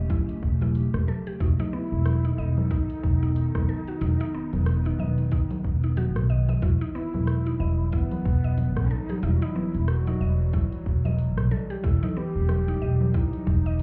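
Heard muffled as if through a wall in a reverberant club, this mystical organic downtempo groove in E harmonic minor moves at 92 BPM with a 16th-note swing, built on a woody, growly pizzicato upright bass up front and a tight, overdriven electronic kick, layered deep house percussion of congas, hi-hat, rim click and shaker, a warbling, lo-fi tape-like pad with phaser and sidechain pumping holding chords from A7/E through B7/E to Emadd9 in the background, round, mallet-like synth pluck arpeggios entering at 0.1 seconds with tape echo, and a breathy low ney carrying the melody with vibrato and tape echo.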